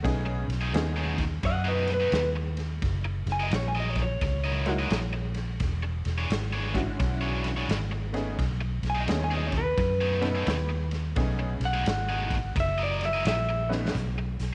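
Electric blues shuffle, rollicking and swaggering, in which a slightly broken-up, lo-fi electric guitar through a small old amp plays a clean solo with slapback echo from the start. Behind it, a detuned, jangly honky-tonk upright piano accompanies, a round, foam-muted vintage electric bass sits up front, and a cranked stack guitar adds an overdriven, picked riff from 0.3 seconds. The raw garage drum kit, with a punchy kick and rolled-off top in a stone room, plays a fill at 13.6 seconds, and the mix carries light studio reverb.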